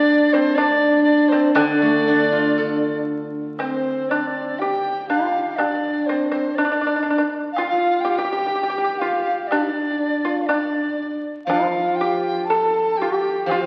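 Wistful and tender, this short cut from a longer piece of Chinese traditional chamber music unfolds in a loose, rubato 2/4. A large bamboo dizi carries the melody up front, its buzzing membrane lending an airy, vibrato-laden voice with tongued notes. Beneath it, a mellow pipa played with fingerpicks and a husky, nasal horsehead fiddle with portamento share the second line, the bowed fiddle sitting close and slightly louder. A bright, silvery steel-string zither rings in accompaniment until 4.6 seconds, then returns at 11.5 seconds, while a very quiet, dry woodblock sits close in the mix. The performance sits in a reverberant recital hall and carries the crackle of a very old 78 rpm record, with the music moving into a new section at 3.6 seconds.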